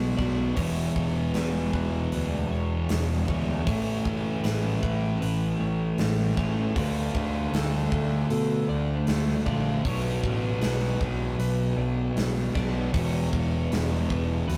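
Shoegaze-leaning dream pop rock at 78 BPM in A major, this blissful, dreamy passage cut from a longer piece rolls through Bm, E, Aadd9, Dm and Bmadd9 under a wet studio reverb with a rough rehearsal-room, tube-saturated character. A dark, distorted fuzz guitar riff sits up front, backed by a biting overdriven guitar riff and a bright, twangy, compressed twelve-string electric guitar playing arpeggios in the background, while a punchy fuzz-laden picked bass anchors the low end. A gated 80s drum kit with a tight kick, medium-tuned snare and hi-hat enters at 0.2 seconds, sounding airy and polished in a bright stone room.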